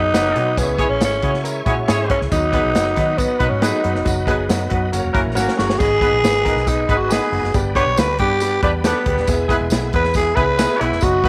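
A straight 4/4 groove at 138 BPM in B major drives this uplifting, warm piece of uptempo 1960s-style soul, where a raspy, breathy tenor saxophone solos up front with scooped notes and growls over a woody, slightly detuned upright piano, a dark, round muted fingered electric bass, very quiet reedy tonewheel organ chords through a slow rotary speaker, a tight vintage horn section playing an octave-doubled second line, a jingly tambourine and a natural country drum kit with a punchy kick that plays a fill at 5.4 seconds, all in light reverb.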